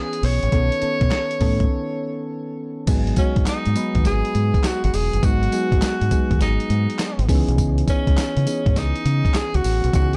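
A clear tenor saxophone with light vibrato carries a jazz-style melody over mellow, chorused electric-piano-like synth keys from the start of this bouncy, slick new jack swing R&B cut, moving at 102 BPM with a 16th-note swing feel through C#m7 and B9. Just after, a gritty, compressed sampler-style drum kit sits up front with a thumpy kick, handclaps, tambourine, hi-hat and crash, joined by a deep, punchy fingered dub bass. After a break from 1.7 to 2.9 seconds, the groove settles onto G#m7 and then C#m9 at 7.3 seconds, all in a dark, dry production.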